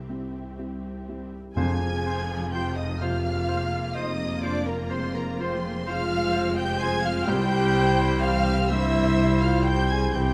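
Cinematic, emotional film score for orchestra, moving in a slow, rubato 6/8 at 42 BPM with a longing, bittersweet mood in this short passage cut from a longer piece. A dark, lush violin section carries the melody with soft attack and expressive vibrato, shadowed by a second line from a closer, studio-toned violin section, while a rich viola section and a clear cello section sit further back and a smooth double bass section anchors the low end. A felt-muted upright piano adds intimate, soft accompaniment alongside ringing, thumb-plucked harp arpeggios. At 1.6 s the harmony shifts from C to Fm, bringing in a clear solo oboe, a mellow clarinet and an airy, hollow silver flute on second lines, along with a distant, roomy French horn section holding sustained chords. Timpani struck with hard mallets sound an articulate F2 until 3.0 s, and the music returns to C at 7.3 s. Close, detailed microphones sit inside a moderate scoring-stage reverb.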